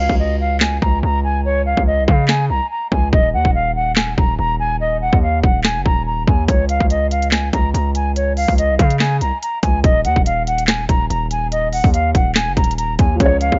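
Worn, warbly cassette tape and studio reverb wrap this dreamy, wistful half-time trap excerpt, where an airy wooden flute sings its vibrato melody over a heavy, saturated 808-style bass and an up-front electronic kit of hard-clipped kick, sharp snare, crisp hats and handclaps, circling Bbm7 and Ebm until a soft, felt-muted upright piano with audible action noise slips in at 13.1 seconds just before the cut.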